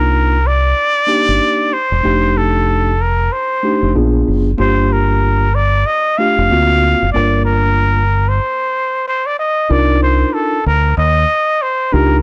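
A swung sixteenth-note groove in 4/4 carries this mellow, cool hip hop cut from a longer piece, where a breathy, nasal trumpet with a straight mute sings an intimate jazz-style solo with vibrato up front. Beneath it, a clean tine electric piano moves through rich extended chords, and a round, punchy dub bass sits dark and direct. The band halts at 8.4 seconds for a brief stop before a new section arrives at 9.7 seconds, all captured in a dry, gritty hardware recording with a touch of studio reverb.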